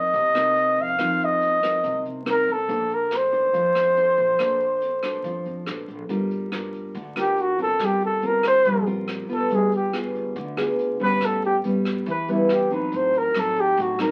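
Crackling like a very old 78 rpm record and set in a small, moderately reverberant room, this relaxed, romantic bossa nova excerpt opens with a close-miked, mellow flugelhorn carrying a jazz-style melody with vibrato up front over dark, fingerpicked classical nylon-string guitar. A woody, thumpy pizzicato upright bass with gut strings sits in the background, while a vintage kit played with brushes adds hi-hat, a tight kick and rim clicks, its pumping room sound warm and its top rolled off. At 6.1 s the harmony turns to minor and the flugelhorn takes a solo through to 14.1 s.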